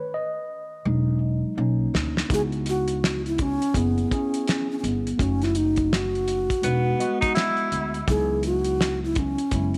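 Light reverb and small-room ambience frame this smoky, nocturnal jazz-hop at 83 BPM in C# minor with a swung 16th feel, where a mellow, clean tine electric piano opens before a woody, dark pizzicato upright bass and a cloth-damped, thuddy drum kit with fat snare and tight kick join, a clay bass ocarina with crisp chiff and unsteady vibrato carries the melody from 2.3 s, and a clear, breathy tenor saxophone with scooped notes adds a brief second line at 6.6 s over chords moving from Emaj7 and Bmaj9 into C#m11.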